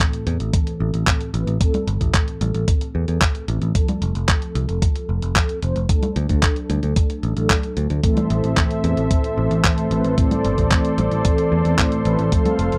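Mellow, dark synth brass stabs open this danceable, melodramatic italo disco cut in A minor at 112 BPM, with chorus and tape echo, over a gritty, compressed sampler-style kit of congas, handclaps and hi-hat and a thumpy electronic kick pushed up front. A growly picked electric bass joins at 0.3 seconds as a filter sweep runs through the passage and the chords move from Am to F and D. At 8.0 seconds, back on Am, a smooth, warbling vintage pad with chorus adds sustained chords high above, all captured in a dry, close 1970s-style studio sound.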